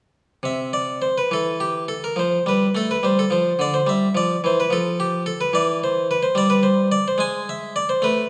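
In a rubato 6/8 lilt at 71 BPM, this radiant, serene fragment of a baroque-style suite movement for solo harpsichord presents a bright, plucked, Flemish-style instrument on a single set of strings, placed up front and mid-forward from 0.4 to 8.3 seconds, drifting between F and Em7 harmonies within a wet recital-hall reverb.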